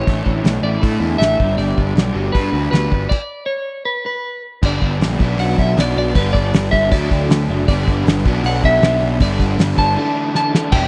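A straight 4/4 pulse carries this wistful yet upbeat indie rock excerpt, cut from a longer piece, set in a dry, close studio sound with a 1970s character and little room ambience. Up front, a cloth-damped, thuddy drum kit with a fat snare, tight kick and dark cymbals sits beside a fuzzed, overdriven picked bass with a direct, amped bite. A dark, clean electric guitar plays the melody, coloured by spring reverb and slapback echo, while in the background a bright, crunchy overdriven guitar with ensemble chorus and slapback and a hollow-bodied overdriven semi-hollow guitar play riffs. The chords move between suspended and major-seventh colours before settling into a cycle of G, Bm and D, and the band breaks off in a stop from 3.1 to 4.6 seconds before the next section begins. A drum fill at 10.3 seconds leads into the brief entrance of a full, lightly overdriven tonewheel organ at 10.7 seconds, holding chords through a slow rotary speaker with chorus vibrato and audible key click.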